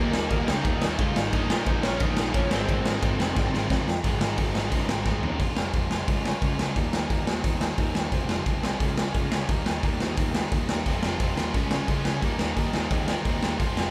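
A gritty, up-front garage drum kit with a punchy kick drives this raw, aggressive punk rock excerpt at 176 BPM, over growly fuzz bass, two bright distorted rhythm guitars playing riffs (the quieter one dropping out between 5.4 and 10.9 seconds), and a dark overdriven lead guitar melody heard in the background until 3.8 seconds, all with the live, one-room feel of a band under light reverb.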